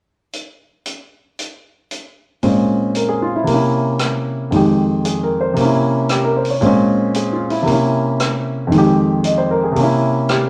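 A generous, wet studio reverb fills this short cut from a longer piece, giving the moody, late-night jazz piano trio a sense of a large room. A swinging big-band drum kit opens alone at 0.3 seconds, its hi-hat, rim clicks and punchy kick sounding acoustic and natural while sitting well back in the mix. At 2.4 seconds a warm baby grand piano arrives up front to carry the melody, ranging from F2 to Eb5 with an unforced, true-to-life tone. The harmony turns through a dark minor cycle of Bbm9, C7b9 and Fm9, with the altered C7b9 returning again and again to keep the mood uneasy and smoky. A 68 percent swing on the eighth notes runs throughout, and both parts continue to the cut at 10.5 seconds.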